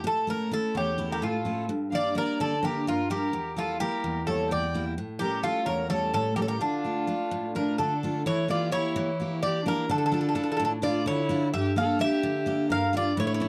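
Intense and driving, this Greek folk fragment in 7/8 puts a bright, metallic bouzouki melody up front over a full-bodied picked steel-string guitar accompaniment, while a nasal bowed violin with vibrato adds a smooth second line from 0.7 seconds, all captured in a dry, close 1970s-style studio sound with moderate booth ambience.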